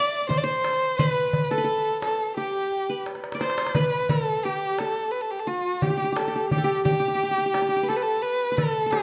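A dark, nasal violin, played by a single player, sings the melody up front from the first moment, bowed with vibrato and portamento and a slightly boxy tone, while a bright-edged, plectrum-plucked qanun with its triple strings carries a second line alongside it. Just after, at 0.3 seconds, a small, high clay darbuka with a natural skin joins, keeping a straight 4/4 at 87 BPM and breaking into a brief fill at 3.1 seconds. This hypnotic, melancholic Arabic maqam ensemble excerpt, cut from a longer piece, sits in a reverberant recital hall that gives the sound a lingering bloom.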